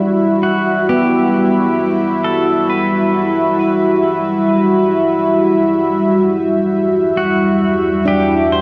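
This reflective, melancholic ambient fragment opens on a smooth, detuned analog pad with chorus up front, a ringing nitrided-steel handpan tracing arpeggios through tape echo, and an ethereal glass harmonica texture in the background, joined at 0.4 seconds by a clean, fingerpicked pedal steel melody with tape echo and at 6.3 seconds by a deep, round sub bass, inside a vast, echoing cathedral reverb.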